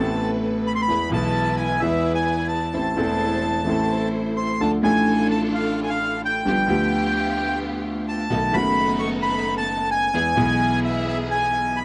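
Set in 4/4 at 130 BPM, this tango moves with a rubato feel, its pulse stretching and pulling in a passionate, dramatic mood in A harmonic minor. A reedy, mid-forward bandoneon carries the melody up front, singing between E5 and C#6. Beneath it, a clear concert grand piano with a deep bass and a vintage character provides the accompaniment, spanning from E1 up to B4. A dark studio string section adds bowed stabs with vibrato and portamento, sitting lower in the mix and giving a lush ensemble colour. All three parts play throughout the 11.8-second passage, which is cut from a longer piece and set in a moderate studio reverb. The harmony moves from Amadd9 through E and Am, then on to Dm, G7 and B7 before landing on E at 10.2 seconds.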